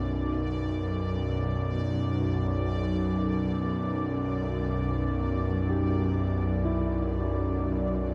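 A dark ambient drone in free time, this short excerpt from a longer piece feels ominous and vast, hanging on a G/B harmony from 0.1 seconds. Up front, a bowed-like drone sounds throughout in the low register from B1 to F#2, its string-like, tense sawtooth tone thickened by detuned unison layers, a noise layer and ring modulation, with a slow attack, long sustain, vibrato and a long release in its own reverb. Far behind it, a bubbling texture holds a single high D5, its resonant sawtooth stepping through random filter changes, treated with chorus and its own reverb. At 5.7 seconds a dark, mellow grand piano enters in the background with arpeggios between E4 and G4, trailed by tape echo until the close at 8.1 seconds. The whole recording sits in a huge, wet ambient space with a 7.2-second reverb tail and carries the character of cassette tape.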